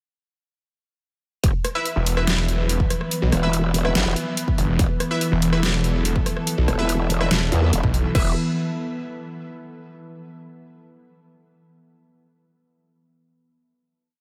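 Soaked in cathedral-like reverb, this dreamy yet heavy, aggressive wobble dubstep piece at 143 BPM in a half-time feel drops at 1.4 s with a punchy, tape-warm electronic kick, an overdriven kit of deep snare, bright hats, rim clicks and crash, and a wobbling, saturated growl bass. At 2.0 s a snarling distorted saw bass of chopped phrases and an evolving, morphing wavetable pad with sidechain pumping join the sparse, echoing orchestra-hit-like synth stabs, before everything settles on a final chord at 8.1 s.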